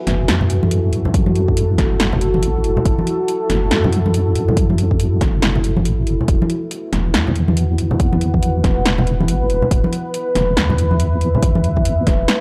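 A moody, mellow pad opens this heavy, cavernous excerpt of deep dubstep, holding sustained chords built from detuned sawtooth unison layers, a sub octave, wave-folding and ring modulation, all softened by chorus and a built-in reverb. At 0.1 seconds a wobbling sawtooth-and-sine bass arrives up front, compressed and dark, with chorus and tube saturation giving it a dense, detuned weight. At the same moment an overdriven house drum kit brings a punchy snare and metallic hi-hats in a swung, half-time feel, while congas with thick skins and soft hands sit in the background with a small-room tone. At 1.1 seconds an overdriven electronic kick joins, deep and layered, re-recorded in a large room like the kit. The harmony moves from F#m7 to E5 at 6.3 seconds, and the recording has a dry, gritty hardware character with light reverb.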